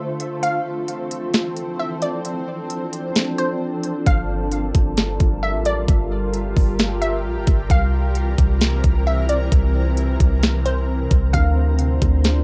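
Overdriven trap drums with a knocking kick, sharp snare and crisp hats sit up front in this hazy, melancholic half-time cloud-rap excerpt alongside a crystalline pluck melody with tape echo and a shimmering, ethereal pad, while a round 808-style bass arrives at 4.1 seconds and a dark, clean electric guitar arpeggio slips in at 11.3 seconds, all framed by the lo-fi grain of a home cassette recording.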